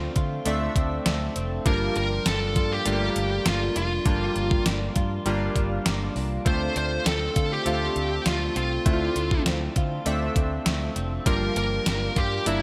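A dark, high-gain lead guitar carries the melody up front from 1.7 seconds, its distorted tone trailed by delay, in this urgent, moody 1980s-style pop passage at 100 BPM in D minor, cut from a longer piece. Beneath it, a thumpy, overdriven 12-bit drum machine with a fat snare and gated reverb drives a straight 4/4 beat from 0.2 seconds, layered over a round, foam-muted fingered bass and glossy, detuned synth keys with pulse-width modulation and a filter sweep that sound from the very start. A clean, picked electric guitar riff sits in the background under lush chorus and delay as the harmony moves between Dm7 and Gm7, all set in a bright, digital production with a spacious hall reverb.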